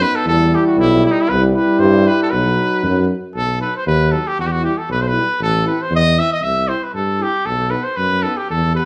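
Balkan brass band folk at 117 BPM in a swung 2/4, restless and bittersweet in B phrygian dominant, cut from a longer piece. A clear, roomy trumpet carries the melody up front, while a mellow, soft-attacked tuba anchors the bass, and a dark euphonium and a trombone with light vibrato sit in the background. The band plays live together in a large studio with moderate reverb, moving through Em, C and B before a new section at 3.3 seconds brings in Am.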